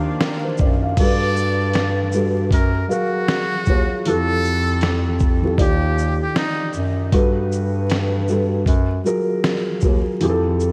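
A felt-muted upright piano opens this nostalgic, cosy lo-fi hip hop excerpt, its soft, boxy tone thick with felt and carrying audible action noise, while a lush, airy unison pad sustains chords in the background for only the first second. A breathy bass clarinet holds the low end with mellow vibrato and a smooth top, and a dusty sampler-style drum kit enters at 0.2 seconds, gritty and compressed, with a thumpy kick, fat snare, hi-hat, shaker and crash. At 78 BPM in 4/4 with a gentle swing on the sixteenths, the groove moves through lush major-ninth chords, shifting from Ebmaj9 through Gmaj9, F#maj9 and Fmaj9. A trumpet with a metal mute carries the jazz-style melody from 1.0 to 6.7 seconds, its brilliant, buzzy, thin sound close-miked, touched with vibrato and trailed by a diffuse ambient delay. The dreamy mix is soaked in a lush hall reverb and dusted with vinyl crackle, with the drums, piano and bass clarinet sitting up front.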